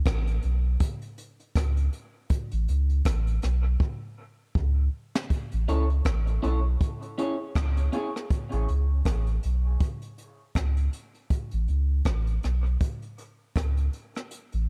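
Hypnotic and spacious, this dub reggae excerpt moves at 80 BPM in 4/4 with a swung sixteenth-note feel, dark and warm in its production with little reverb. A round, deep sub bass sits up front, its sine-like tone sustained and mellow with a fast attack, holding between A1 and C#2. A jazz kit played with brushes shares the foreground, pairing a high-tuned snare and rim clicks with a boomy kick and hi-hat in a small acoustic room, and it plays a fill from 3.8 to 5.3 seconds to close the opening break. Briefly, between 5.7 and 8.1 seconds, a picked electric guitar at the edge of break-up slips in, compressed and slightly gritty, bathed in lush chorus and dub echo. The harmony drifts between A, C#m and chordless stretches, and the kick drops out for the final moments before the cut.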